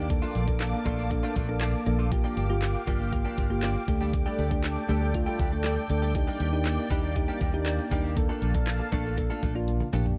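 A straight 4/4 dance-pop groove at 119 BPM drives this driving, bittersweet excerpt, with a smooth R&B drum kit of knocking kick, woody snare, handclaps, hi-hat and toms ending in a fill at 9.7 seconds, a grainy tube shaker in the background, a round, foam-muted fingered bass pumping up front, soft electric-piano-like synth keys with chorus, a clean direct-recorded guitar riff bathed in lush chorus, and a sweeping, resonant sawtooth pad sustaining Bbmaj7, Gm7, Dsus4 and Ebmaj7 chords, all in a dark, dry production.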